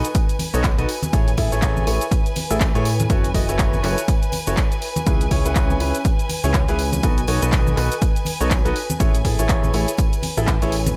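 A swung groove drives this soulful, energetic piano house excerpt: a punchy, tape-toned electronic kick sits up front from 0.1 to 10.6 seconds, while an analog drum machine supplies handclaps, hi-hat and shaker. Tambourine and congas, struck with hard hands in a small room, add an acoustic layer further back in the mix. A fat, detuned sawtooth bass with a fast attack, decaying notes and a filter sweep moves through the low register, pumping against the kick. A clear, intimate baby grand piano carries the riff with long sustain and audible action noise, dressed in lush chorus and analog delay and also breathing with sidechain pumping. Behind it, a distant studio violin section holds smooth, bowed chords with vibrato, pumping as the harmony cycles through B7, Amaj7, F#m7 and C#m7 under a light reverb.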